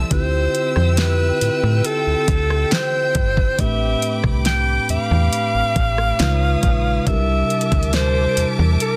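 Muted, chorused synth keys, a distant, lush string section and a snappy FM slap bass open this longing, late-night contemporary R&B excerpt, joined at 0.1 s by a smooth drum kit with knocking kick, fat snare and metallic hats, and by an up-front alto saxophone singing the melody with vibrato and delay, all in a dense, heavily limited mix that moves through Dm11, Am11, C#9 and C13.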